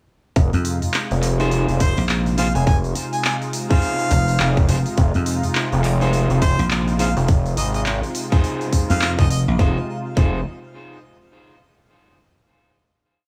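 An overdriven, tight electronic kick sits up front in this gritty, funky glitch hop piece, driving a swung drop from 0.4 seconds alongside a glitchy kit of clicky hats, rim clicks and handclaps with edited beats. Two basses share the low end: a nasal, wave-folded synth bass with tube saturation plays chopped phrases answered by a dry, foam-muted thumbed slap bass, while a smooth, detuned analog pad with chorus and sidechain pumping rests in the background. Dark, slightly broken-up electric guitar stabs with echoing delay enter at 1.4 seconds, a clear harmonica offers short answering phrases, and the piece ends on a final chord from 9.6 seconds, all in a nearly reverb-free sound.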